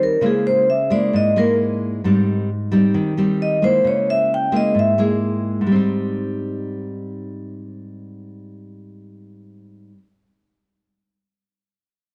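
Bossa nova with a relaxed, breezy mood, featuring a close, ringing, metallic vibraphone played with medium hard mallets and the motor off, which carries the melody up front until 5.1 seconds. A fingerpicked classical nylon-string guitar accompanies throughout to 10.1 seconds, swaying between Dbm6 and Abmaj7 chords. The production is dark, with a moderate plate reverb, and the fragment is cut from a longer piece.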